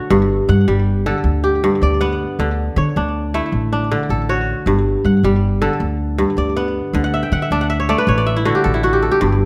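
Hypnotic and warm, this short clip of West African string music moves at 106 BPM in a straight 12/8, centered on G lydian. The kora sits up front, fingerpicked in ringing, crisp arpeggios that span a broad range and carry a slapback echo. Beneath it, a pizzicato upright bass with steel strings supplies a woody, dark foundation, entering at 0.1 seconds. The harmony alternates between G and D throughout, and near the close the kora breaks into a fill from 7.0 to 9.2 seconds. A moderate recital hall reverb surrounds the pair, and the clip is cut from a longer piece.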